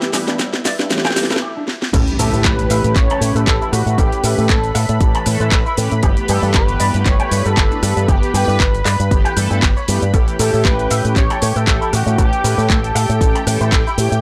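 Feel-good and sunny, this nu-disco excerpt opens on a brief build-up with a soft, round pluck arpeggio, a drum fill and a short break, then drops at 1.9 s as a punchy electronic kick and a quiet impact join a house kit with cracking snare and metallic hats, a dark, round, up-front fingered bass with an envelope filter, a twangy, scooped guitar riff with lush chorus in the background, a mellow brassy synth accompaniment with phaser, and a thick, warbling pad. A bold, nasal unison lead with tape echo enters at 2.2 s, all carried by a dry, gritty cassette sound.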